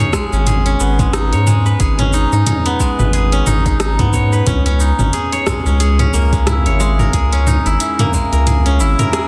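Swung sixteenths in 4/4 drive this earthy, mystical organic downtempo excerpt, where a bright, silvery steel-string zither rings out fingerpicked arpeggios up front through tape echo, a layered deep house kit adds overdriven metallic hats, rim click, shaker and toms, a soft electronic kick pulses until 8.3 seconds, and a round, dark analog bass sits underneath with sidechain pumping, all set in light digital ambience and a dense, heavily limited modern master.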